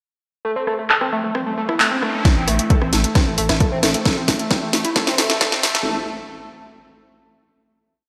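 Dark and intense, this short, driving peak-time techno piece in straight 4/4 opens with a gritty, screaming overdriven synth lead at 0.4 seconds, playing a repeating 12-step sequence that drifts against the bar, its sawtooth and pulse-wave tone distorted, lightly chorused, touched with vibrato, delay and sidechain pumping, and swept by a filter. A layered, up-front techno drum kit brings a cracking snare, rim clicks, handclaps and open and closed hi-hats, overdriven and wrapped in gated reverb, with low-pass filtering on the snare and hats and pumping on the hats, while a background riser builds the transition out of the intro. The build begins when a punchy, overdriven four-on-the-floor electronic kick enters at 2.3 seconds, re-recorded in a large room, joined at 2.4 seconds by a deep, thick, saturated sine sub bass that sustains a low rumble between the kicks under its own pumping and filtering. 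Filter sweeps and a drum fill push the build forward to the end. A lush hall reverb and a bright 1980s-style digital sheen shape the overall sound.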